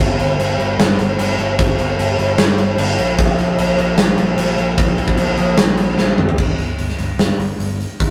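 A huge, acoustic arena drum kit sits up front with a punchy kick, a medium-tuned snare, hi-hat, toms and crash cymbal, joining at 0.2 s and filling at 6.0 s before the music shifts into a new section at 6.4 s. Beneath it, a bright, growly picked electric bass holds low between G1 and Bb1 from the very start, driving a menacing, aggressive hard rock passage in G minor at 150 BPM in straight 4/4. The short cut has a rough rehearsal-room sound with tube saturation and light reverb, while the drums carry a big-room character.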